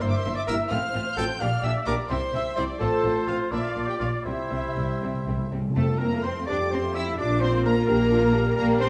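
A graceful, spirited classical-period movement for symphony orchestra opens in F major, its 6/8 lilt at 85 BPM pulled gently with rubato as lush violins carry the smooth, vibrato-laden melody over a second violin line, warm clarinet and oboe countermelodies, dark viola accompaniment with portamento, and a bass of clear cellos and rich double basses. Mellow French horns sustain chords and a clear trumpet punctuates with stabs from 0.5 seconds, while hard-mallet timpani on calf heads add an articulate, up-front fill from 4.3 seconds. An airy silver flute slips in very quietly at 5.7 seconds as the music turns to a new section, all set in a dark, warm recital-hall ambience cut from a longer work.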